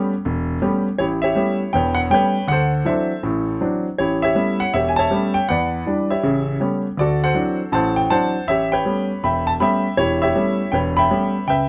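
A clear, natural-sounding concert grand piano sits up front in this solo jazz piece, its deep bass reaching down to E1 and its top up to B5, swinging in 4/4 at 160 BPM in A mixolydian. The sophisticated, warm mood rests on a chord movement between A9 and D9 with a brief turn through Em7 around 5.5 seconds. A moderate club reverb and a dark production frame this short cut from a longer performance, which runs to 11.7 seconds.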